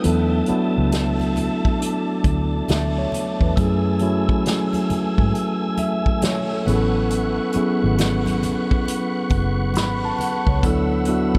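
A dreamy mix soaked in a huge ambient reverb frames this introspective, sultry neo-soul R&B excerpt at a slow 68 BPM with a swung sixteenth feel, moving from E7sus4 to F#m9 before touching D69 near the close. An up-front, mellow tine electric piano carries the accompaniment through its built-in speakers, while a smooth tonewheel organ with chorus vibrato, key click and a stopped rotary speaker holds sustained chords beneath it. A distant, roomy acoustic kit played with bundle sticks brings a tight kick and medium-tuned snare, very quiet thick-skinned congas add percussion, and a dark, round, punchy foam-muted fingered bass anchors the low end.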